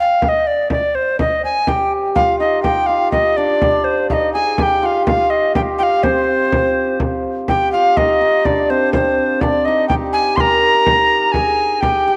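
A driving, ancient-sounding medieval dance at 124 BPM in 3/4 and C minor, cut from a longer piece, in which an airy, chiffy tenor recorder carries the melody up front from the start, a deep frame drum played with soft hands joins at 0.2 seconds, and a bright, shimmering hammered dulcimer adds a second line from 1.7 seconds, all set in a wet plate reverb.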